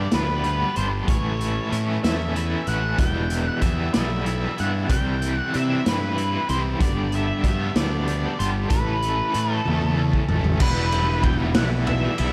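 A growly, round fuzz bass sits up front in this dark, hypnotic psychedelic rock excerpt, moving slowly in a steady 6/8 as the chords shift from G and A through E minor and Cmaj7. Alongside it, a bright, double-tracked stack guitar plays an overdriven riff treated with tremolo, while an octave-fuzz lead guitar with a dusky, distorted tone carries the melody through analog delay. A raw garage drum kit, punchy in the kick and saturated with a pumping small-room sound and rolled-off top, drives the groove and breaks into a fill from 9.7 to 10.6 seconds. At 10.6 seconds the music settles on E minor as a very quiet tonewheel organ enters with full, clean sustained chords through a slow rotary speaker, joined by distant, low-tuned congas with a thick-skinned thump. The echo-heavy mix, with light studio reverb, gives the piece a murky, trance-like haze.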